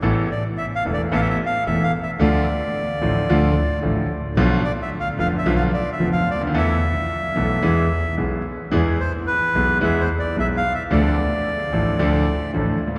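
Tango excerpt, sultry and dramatic at 110 BPM in 4/4 with a rubato feel, where a reedy, airy bandoneon carries the melody from 0.3 s over a brilliant, up-front concert grand piano with deep bass and a dark, soft-attacked bowed double bass played sul tasto with a nasal, floating tone, all bathed in a cathedral reverb of 5.9 s through chords moving from Asus2 and Dm to Bdim, Esus4 and E.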